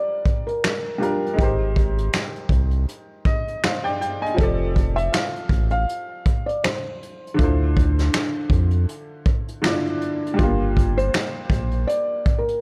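A round, deep analog bass sits up front in this mellow, dreamy lo-fi hip hop excerpt at 80 BPM with a gentle 16th-note swing, entering at 1.4 s beneath a vintage brush kit of finger snaps, hi-hat, punchy kick and medium-tuned snare that sounds roomy and distant with a rolled-off top. A felt-muted upright piano carries a soft, thick-felted melody while a brilliant, woody second upright piano with audible action noise and cassette-tape coloring supplies accompaniment, and an upright piano fill arrives from 2.9 to 4.4 s. The harmony drifts from Gm7 through Abmaj7, F69 and Dm7 before returning to Gm7, all set in an intimate small-room ambience.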